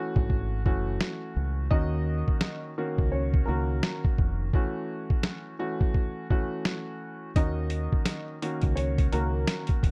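Dark and reflective, this short boom-bap hip-hop cut sways with a 16th-note swing under a dry, warm production. A worn, intimate grand piano with audible action noise and long sustain opens alone through a cassette-tape haze, joined at 0.2 seconds by a gritty, pitched-down sampler drum kit with a thumpy kick and medium-tuned snare, up front, and a round, deep fingered electric bass. At 1.7 seconds a woody, slightly detuned upright piano carries the mellow melody, touched with digital delay, over chords that move between Gbm7 and Ebm7.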